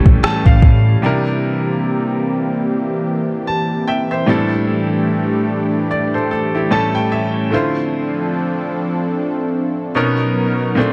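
Light reverb and a digital ambience wrap this brief contemporary R&B fragment, cut from a longer piece, in a sensual, longing atmosphere with a gently swung sixteenth-note feel. An intimate baby grand piano sits up front, its natural tone carrying a long sustain and audible action noise as it accompanies throughout and opens with a fill. Alongside it, a vintage analog pad, also up front, holds sustained chords with a smooth, warbling, detuned sawtooth character, a slow attack and chorus. A dark, round, foam-muted electric bass and a produced electronic drum kit with a soft kick and rim click, re-recorded in a large room, appear only briefly, stopping by 0.9 seconds. After that the piano and pad carry the harmony through chords such as A7, C7, A7sus4, Dm7 and Bmaj7, with a second piano fill arriving at 6.3 seconds.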